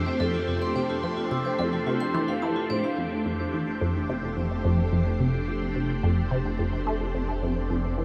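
A swirling, vintage string machine holds sustained F major chords up front, with phaser and shimmer reverb, while a juicy, squelchy blip pluck riffs low underneath and a metallic, ringing vibraphone struck with hard mallets spins arpeggios through delay. A filter sweep runs over a synth arpeggio for the opening 3 seconds. At 3.0 seconds the vibraphone stops and a round, deep analog bass settles on a low F, giving this expansive, luminous fragment of sequencer-driven space music at 108 BPM a darker floor inside a vast, echoing reverb.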